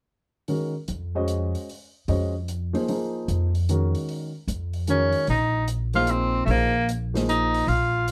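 A swinging 3/4 pulse at 150 BPM drives this short modal jazz fragment in Bb minor, cut from a longer piece, with a hypnotic, spiritual mood. An intimate upright piano, woody and smooth with its action noise audible, opens at 0.5 seconds with accompaniment over a Bbm9 harmony, alongside an airy, polished jazz kit playing hi-hat and a medium-tuned snare, sitting low in the mix. Pizzicato upright bass on steel strings enters at 0.9 seconds, up front and anchoring the low register around Bb1 to F2. At 5.3 seconds the harmony shifts to Bb7sus2, and just before that, at 4.9 seconds, a clear tenor saxophone with vintage character and vibrato takes the solo melody in its middle range. The production is dark and warm overall, with light reverb.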